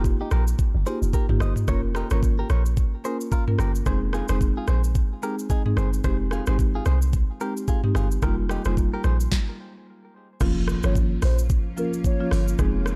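A smooth, sultry afrobeats excerpt opens with a knocking, produced drum kit with sharp snare and metallic hats, a deep, round log drum bass, close-miked woody marimba and a bright, twangy clean guitar riff with tape echo, and after a brief stop at 9.3 seconds a very quiet electronic impact arrives, a hollow clarinet-like synth lead with chorus, phaser and vibrato enters at 10.9 seconds, and a blurred, cloudy granular pad drifts in the background from 11.2 seconds, all within a dark production with little reverb.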